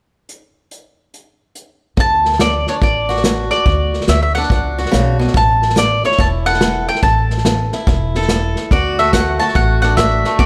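A swung 4/4 groove at 143 BPM opens with the unplugged drum kit playing alone from 0.3 s, its bundle sticks, punchy kick and medium-tuned snare sounding roomy in a studio space. At 2.0 s the mandolin takes the melody up front with bright, double-strung picking, joined by a boxy picked swing-style acoustic guitar and a dark, thumpy pizzicato upright bass with a woody tone. The result is a heartfelt, down-home honky-tonk and classic country excerpt in D major, cut from a longer piece and set in light reverb.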